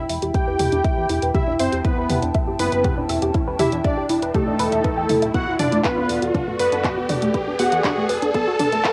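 Heard through a cassette haze with a wet booth ambience, this 8.9-second cut from a longer melodic techno track builds at 120 BPM in E minor, driving and dramatic as the chords move from Em to Bm7/E at 5.3 seconds. An up-front, punchy electronic kick and a house kit of handclaps, bright hats and toms sit over a fat, nasal analog bass, while a dark, wave-folded analog pad holds sustained chords and everything tonal pumps against the kick. A smooth, airy supersaw melody and a bold, bright polysynth second line play alongside tight, detuned sequenced arpeggios with 12-bit grit, the supersaw and arpeggios both under filter sweeps, as a background riser enters at 1.2 seconds to push the build-up.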